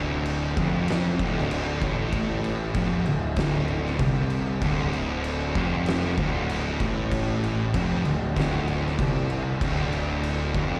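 Stoner and doom metal with a sludgy, hypnotic pull, heard live through a venue's PA in recital hall reverb, this fragment hangs on one chord as two thick fuzz guitars grind out the riff, one warm and touched with slapback echo and the other dark and set in the background, over a bright, growly, overdriven picked bass up front, while an oversized low-tuned drum kit with a boomy kick, fat snare and dark cymbals comes in at 0.3 seconds, gritty and close.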